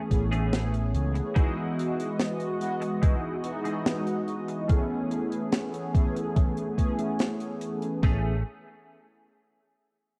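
A small-room, cassette-tape haze wraps this dreamy, woozy vaporwave excerpt at 72 BPM in A lydian, where a dark, detuned synth brass with lush chorus and analog delay sustains Amaj7 and Emaj7 chords over a thumpy, overdriven 80s drum machine and a dry, high-tuned funk kit snare. A quiet, clean semi-hollow guitar riff enters at 0.3 seconds, softened by ensemble chorus, delay and a filter sweep. A round, punchy fretless bass with tube saturation appears only briefly at the start and again at 8.0 seconds.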